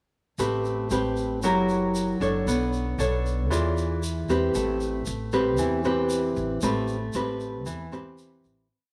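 A wet echo-chamber reverb with a long 2.6-second tail wraps this short, intimate bossa nova piece in A minor, moving smoothly at 116 BPM in a straight 4/4. The up-front nylon-string guitar carries the accompaniment, fingerpicked in a classical manner with thumb bass under syncopated plucked chords, running from E3 to D5. Beneath it, a woody, thumpy upright bass with gut strings plays pizzicato, outlining dotted root-and-fifth lines low in the mix. A grainy, band-limited tube shaker sits quietly in the background with a bright, vintage edge. The harmony cycles through Am9, F#7b9, Bm9 and E7b9 before returning to Am9, and the whole piece fades out from 6.6 seconds to its close at 8.7 seconds.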